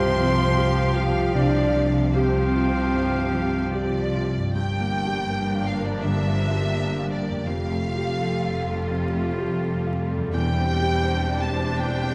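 Cinematic, emotional film score with a sorrowful, longing mood, moving in a rubato 4/4 at 72-85 BPM over a progression from Csus4 through Gm7 and Fadd9 to Cadd9/E. A lush, vibrato-rich violin section carries the melody while a second violin line, a bright solo oboe, a pure straight-toned flute and a soft-attack clarinet add supporting lines, the woodwinds dropping out by about 4.2 seconds. Beneath them, a clear, intense viola section, a felt-muted vintage upright piano, a dark French horn section holding sustained chords, very quiet ringing harp arpeggios, and expressive cellos with focused double basses form the foundation, all set in a moderate scoring-stage reverb with a layer of vinyl crackle.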